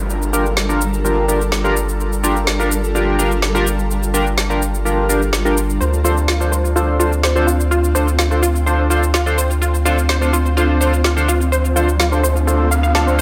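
A straight 4/4 pulse at 126 BPM drives this expansive, dreamy progressive house excerpt in G minor, with layered electronic shaker and a woody snare entering at 0.1 seconds. Underneath, a round analog bass holds the low end from the start, deep and mellow yet up front, its sine and wave-folded square tones evolving over sustained notes. A shimmering ambient pad lays ethereal, slow-attack chords drenched in chorus, phaser and built-in reverb, while a retro, glossy polysynth plays pulse-width-modulated stabs through digital delay. At 5.8 seconds, as the harmony moves from Gm7 to Dm7, a lush, detuned unison pluck adds punchy, decaying arpeggios coloured by vintage 12-bit sampler grit and delay. Very quiet effects frame the passage: a downlifter in the opening seconds and a riser from 11.4 seconds, all set in a moderate digital room ambience.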